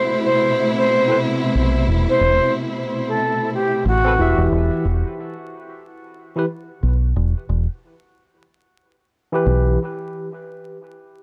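A 91 BPM trip hop groove in 4/4, swung on the sixteenths, sets a smoky, cinematic mood in E minor in this short cut from a longer piece. At the start, an airy jazz flute carries the melody with vibrato and tongued phrasing, sounding distant and trailed by tape echo, while a lush bowed string section holds soft-attack sustained chords beneath it; both stop at 4.5 seconds. A barky tine electric piano arrives at 1.1 seconds with bright, clean accompaniment, coloured by harmonic tremolo, 12-bit sampler grit, a low-pass filter and its own tape echo. At 1.6 seconds a deep dub fingered bass enters, round, foam-muted and punchy through tube saturation, sitting loudest in the mix. The harmony moves from Amadd9 to E minor, then drops to silence of chords near the end, all within a dry, gritty hardware sound with light small-room reverb, transformer saturation and vinyl crackle.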